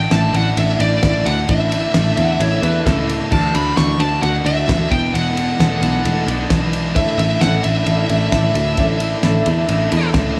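A straight 4/4 pulse at 132 BPM drives this jangly, nostalgic folk rock and heartland rock excerpt, where a bright overdriven lead guitar with tape echo sings the melody over picked steel-string acoustic, a double-tracked cranked stack guitar riff, a round, foam-muted electric bass up front, a cloth-damped thuddy drum kit with a fat snare and dark cymbals, and a very quiet mellow tonewheel organ on slow rotary, while an overdriven slide guitar adds a brief second line from 2.2 to 3.2 seconds over chords moving from Asus4 through Dadd9 and E7sus4 back to Asus4.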